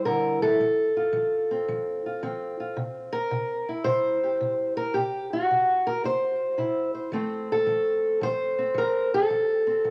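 A home cassette recording with light reverb and a small-room ambience gives this short cut from a longer piece an intimate, gritty character. It is acoustic country blues in a laid-back mood, moving at 110 BPM in 4/4 with a swung eighth-note feel in C major. A lone fingerpicked steel-string acoustic guitar carries the whole passage, sitting up front with a dark, boxy parlour tone and ranging from C3 to C5. The harmony opens on a rootless C, shifts to F at 0.6 seconds, returns to C at 2.8 seconds and settles back on F at 7.1 seconds. The result is a relaxed, unhurried stretch of solo playing that feels close and homespun.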